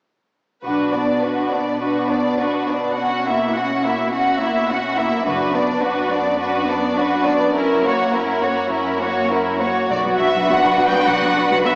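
With a rubato pulse around 104 BPM in 4/4, this stormy, dramatic classical-period orchestral movement in B minor sets rich, gently vibrato violins on a smooth melody over a second violin line, while warm viola accompaniment fills out the harmony and even-toned cellos anchor the bass through Bm and F#7 chords, and dark, woody double basses enter in the background at 0.7, 5.3 and 9.9 seconds, all heard from further back in a reverberant scoring stage with a small-speaker quality, in a short section cut from a longer piece.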